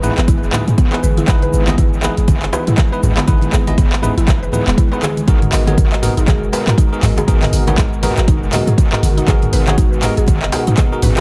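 An overdriven electronic kick, deep and up front with the weight of a large room, drives this warm, spiritual afro house excerpt at 120 BPM in G# minor, with a swung 16th-note feel and a deep, boomy 808-style bass pumping beneath it. Bright, bell-like tine electric piano stabs and a woody, round mallet-like pluck arpeggio sit over a smooth, detuned sawtooth pad carrying gritty 12-bit sampler texture, moving from Emaj7 to G#m9 at 5.3 seconds. An afro-pop kit of handclaps, dark hats, shaker and toms plays alongside saturated background congas and a very quiet, close djembe in an echo-heavy mix with light reverb and dub echo.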